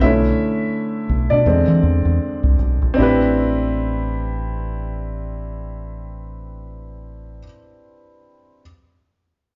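This short, sultry R&B passage opens with a woody upright piano and a deep, dub-style fingered electric bass sounding together. The piano takes a solo over the first 3.0 seconds as the tempo eases back, moving from Bm7 to E7b13 before settling on Am7. The tempo sits around 76 to 86 BPM in 4/4 with a gentle swing on the sixteenths, in A minor. The intimate piano sits up front, its natural tone carrying audible action noise. The bass is dark, round and punchy, with a direct, amped character, and it drops out at 7.4 seconds while the piano carries on to 8.6 seconds. The band plays live in one room with a moderate large-studio reverb, and the top end is softly rolled off, giving the whole cut a smooth glow.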